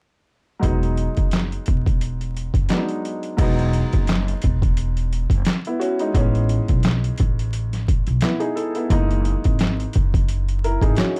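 A swung boom-bap groove in 4/4 drives this nostalgic hip-hop excerpt. Its gritty, overdriven sampler-style kit is pitched down and compressed, with a thumpy kick, medium-tuned snare, hi-hat, handclaps and crash cymbal up front. A woody pizzicato upright bass on gut strings anchors the low end, while a smooth, vintage upright piano with short sustain plays accompaniment over Emaj9, Amaj9 and F#13 chords, colored by cassette tape, filtering and plate reverb, all within a dark, dry production dusted with vinyl crackle.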